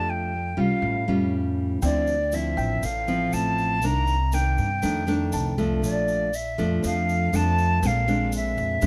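This relaxed, romantic bossa nova excerpt opens with an airy silver flute carrying the melody up front, a fingerpicked nylon-string guitar with a classical touch, and a woody, thumpy upright bass played pizzicato on gut strings. The guitar sits up front and warm alongside the flute, whose straight tone and crisp attack give the line a clean, metallic shine. At 1.8 seconds the harmony settles onto Dm9 and the texture thickens: a grainy, bright tube shaker enters from a distance, with a large-room sense about it, and a natural-sounding grand piano adds high touches in the background until 6.0 seconds. The dark, acoustic bass anchors the low end throughout as the chords move through Cm9, F13 and Bbmaj7 before landing on Bb9. The close, detailed recording has little reverb, keeping the flute and guitar intimate and present.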